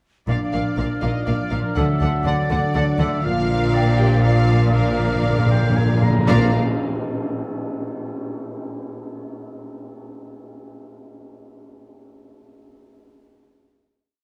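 Moving in three with a loose, uneven pulse that gradually slows, this triumphant, adventurous film-score cue plays as a complete short piece in a dark, reverberant scoring-stage sound. From 0.3 seconds a lush, vibrato-rich violin section carries the tune in focused chords, while a second, more distant violin section doubles it at the octave. A mellow solo oboe and a pure, very quiet flute ensemble weave independent inner lines, and violas fill in repeated chords beneath. Punchy French horns and smooth trombones hold sustained harmonies, backed by a ringing, fingerpicked harp spreading broken chords, full-bodied cellos and expressive, shadowy double basses. At 3.2 seconds dry, close timpani roll in alongside dark cymbal swells and tam-tam strokes, building toward an ensemble accent and a final held chord at 6.3 seconds.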